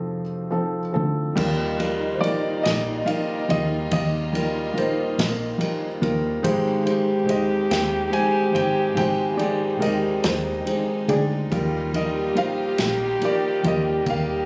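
Captured on a phone in a club-like room with light reverb and compression, this heartbroken, intimate acoustic folk-pop ballad in a slow 6/8 at 47 BPM opens on a dark, up-front concert grand piano carrying the melody, its action noise audible, over a round, foam-muted fingered electric bass. At 1.4 s a mellow French horn with light vibrato adds a second line, joined by a gut-string chamber section holding background chords and an acoustic drum kit played with bundle sticks, with punchy kick, snare, ride and crash, as the harmony moves from F7 through Ebadd9 and Abmaj7.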